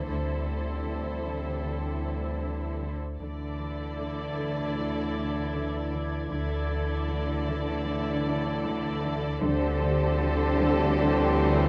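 Tense and eerie, this short stretch of suspense film score, cut from a longer piece, moves at an unhurried 4/4 pulse with a straight feel. Muted violins carry a narrow, veiled melody between C5 and D5, shadowed by a second, more distant violin line holding A4, while con sordino violas fill in lush accompaniment in the background. Beneath them, muted cellos and double basses sit on a low D, doubled by a clean, deep sine sub bass drone, and a second, very quiet cello section traces a riff spanning D3 to D4. A soft-edged French horn section and a faint, bright trombone section hold sustained chords that shift from Am7/D to Dsus2 at 3.2 seconds and back at 9.4 seconds. At 3.2 seconds a high, very quiet violin texture enters, hovering between A5 and G#6, while close, detailed microphones and light reverb keep the dark, bowed strings intimate.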